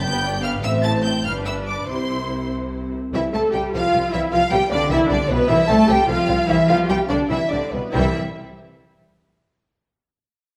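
Spirited and cheerful, this excerpt of a quick classical-period movement for string orchestra unfolds in a rubato 6/8 in C major at 92-103 BPM in dotted quarters, with a focused, lush violin section carrying the melody up front, a dark, woody second violin line sitting in the background, smooth, even violas supplying the accompaniment, and bowed cellos joined by soft-attacked, expressive double basses to form a warm vibrato bass, the whole ensemble set in a wet recital-hall reverb.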